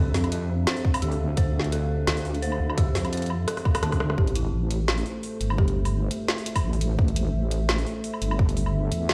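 A dark, detuned analog pad, a deep wobbling sawtooth bass and an eerie FM synth bell open this tense, cinematic half-time drum and bass excerpt together, with a very quiet metallic drone warbling underneath until the bell and drone stop at 4.2 s. Up front, a tight electronic kick and a layered kit with a woody snare, metallic hats, rim click and woodblock drive the drop, with a drum fill leading into the second pass. In the background, a dry, rustic marimba with hardwood bars plays brief melodic phrases through digital delay, all heard in a bare stone room.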